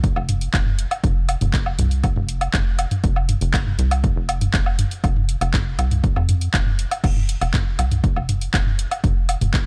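Dark and dramatic, this short melodic techno fragment, cut from a longer piece, runs in a steady straight four with a punchy, tape-warm electronic kick beneath a tight, driving sequencer bass of sawtooth and square-wave filter plucks that decay into a mellow tone, pumping against the sidechain. Sitting up front, a layered house kit adds warm hi-hats, handclaps, toms, woodblock and crash cymbal, its hats, toms, percussion and cymbals also breathing with sidechain pumping. The mix is dry, with a dull, rolled-off top end.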